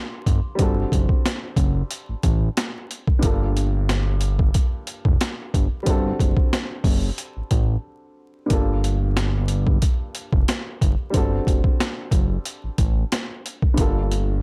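Dry and crackling with vinyl noise, this tough, gritty boom-bap hip-hop excerpt in G minor at 91 BPM with a light swing sets a dark, woody upright piano, tape-worn, filtered and touched with plate reverb, over a Gm9 to D7 progression beneath a fat, wave-folded sawtooth bass and up-front, overdriven, pitched-down sampler drums with a thumpy kick and a high-tuned snare, pausing for a brief break at 7.8 seconds.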